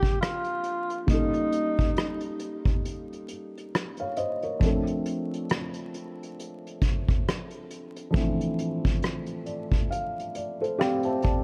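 Melancholic and hazy, this lo-fi hip hop excerpt drifts along at 68 BPM in 4/4 with a gentle 16th-note swing, set in D minor. A breathy tenor saxophone opens with a short jazz-style solo line between Eb4 and G4, its soft attack, vibrato and scooped notes softened by a low-pass filter and an analog delay before it falls away at 2.8 seconds. A felt-muted upright piano carries the accompaniment throughout, mellow and intimate with thick felt and audible action noise, colored by cassette tape and a low-pass filter, and it closes with a fill from 9.0 seconds. Underneath, a vintage brush drum kit plays hi-hat, kick and rim click, with a punchy kick, a rolled-off top and a gritty 12-bit sampler character, sitting up front alongside the other parts. The harmony moves from Bbmaj9 to Eb7#11 and settles on Dm7, while light reverb, small room ambience and vinyl crackle give the whole a dark, warm production.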